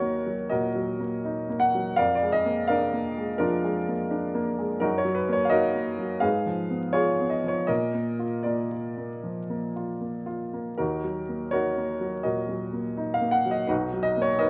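A woody, natural, up-front upright piano plays alone through vinyl crackle and a moderate large-studio reverb in this stormy, brooding romantic character piece in E-flat minor, tuned to A4 = 443 Hz and moving with rubato at 76-86 BPM in 4/4, its chords settling back on E-flat minor at 10.8 seconds and turning to B major seventh at 13.7 seconds before the 14.5-second fragment, cut from a longer work, breaks off.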